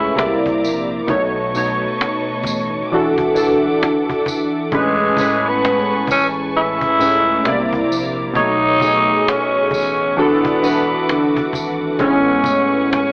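A growling, raspy tenor saxophone carries a jazz-style solo up front in this cosy, nostalgic lo-fi hip hop excerpt at 66 BPM in A major with swung sixteenths, set over round, detuned analog keys with chorus and phaser, lush bowed strings, a deep sine sub bass, snappy close cajon and jingly tambourine, moving through C9, B9, E9sus4 and Amaj9 chords beneath a cassette-tape, AM-radio sheen and wet studio reverb.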